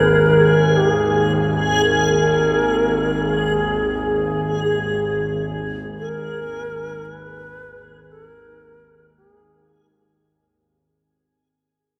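A long shakuhachi carries the melody from the start, its airy, bamboo tone with vibrato and tongued, expressive phrasing set in delay, ranging from Ab4 to Cb5 over a held Absus2. Beneath it, a nasal, detuned bowed-like drone with a noise layer sustains low Ab1 to Eb2 notes until 10.3 s, while a reversed, granular texture on Ab4 lends a dreamy swell; both sit up front in their own built-in reverb. This cavernous, desolate dark ambient excerpt floats in free time, tuned to A4 = 441 Hz, inside a cathedral reverb with a 5.2 s decay, and fades out across its length as a fragment of a longer piece.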